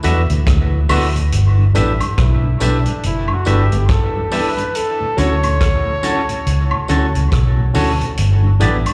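Sweet, romantic lovers rock reggae in a swung groove, cut from a longer piece and heard live through a venue's PA in a recital hall, where a round, foam-muted fingered bass sits up front beneath a punchy vintage drum kit of kick, hi-hat and rim click, a barky, lightly overdriven tine electric piano, a mellow tonewheel organ on slow rotary in the background, bright twangy clean guitar stabs, and a band-limited tambourine and woodblock, and then a soft-attack flugelhorn enters at 2.2 s with a jazz-style solo of scooped notes and light vibrato over chords moving from D69 to G6 and Dmaj7.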